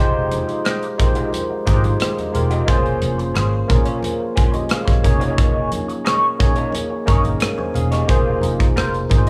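A small room's light studio reverb frames this bittersweet, smooth excerpt of lush 1970s-style soul at 89 BPM in F minor, where a barky, lightly overdriven tine electric piano with analog chorus sits up front, an electric guitar through a small old amp plays a slightly broken-up, lo-fi wah riff with ensemble chorus, a dark, foam-muted fingered bass plays round and punchy low notes, and from 0.3 s a polished, airy drum kit with a punchy kick and rim click joins distant, thin-skinned congas, all moving through Fm9, Bbm9/F, Eb7sus4/F and Ab69/F.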